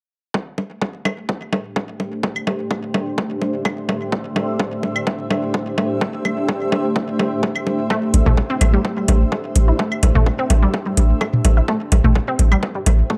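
Sparse and cool, this minimal techno excerpt in A minor runs at 127 BPM in a straight 4/4, opening at 0.3 seconds with a punchy, overdriven kick up front alongside tape-toned electronic bongos, claves and toms treated with digital delay, before a cloudy, blurred granular pad drifts in, pumping against the kick. Around 7.9 seconds a squelchy, resonant blip pluck arrives with chorus and delay, and by 8.1 seconds a deep, mellow sub bass with a pitch-drop attack and metallic, overdriven hi-hats fill out the groove. The production is dark with light reverb, and the kick and hats carry the sound of a large room.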